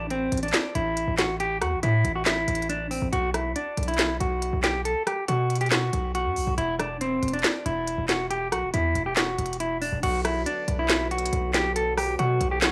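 Trap-flavoured hip hop in B phrygian at 139 BPM with a menacing, half-time feel, cut from a longer piece and captured as a dry, gritty hardware recording with transformer saturation and small room ambience. A dark, clean, fingered electric guitar carries the melody up front through a low-pass filter and analog delay, over a punchy, heavy 808-style bass with a sine body and noise layer and an up-front electronic trap kit of sharp snare, crisp hi-hats, rim clicks, handclaps and crash cymbal, moving through A5, B5 and E5. At 10.0 seconds the harmony settles on B minor as a distant, roomy French horn section enters in the background with sustained classical-style chords and light vibrato.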